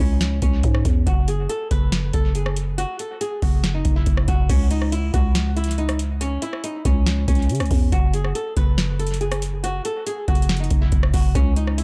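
This dark, melancholic trap and hip hop excerpt moves at 140 BPM in a half-time 4/4 feel, set in C# minor. A fingerpicked flamenco guitar carries the melody throughout, its tone filtered and softened and trailed by dub echo, with finger squeaks audible between notes. A growling, buzzy 808-style bass sits up front with a fast attack and decaying sine body, reaching down to F#1. The booming analog drum machine is just as forward, overdriven, with a deep kick, tonal snare, metallic hats, rim clicks and crash cymbal. A C# minor chord opens the passage before the harmony falls away at 1.1 s, and a new section begins at 4.5 s, all bathed in an echo-heavy digital ambience.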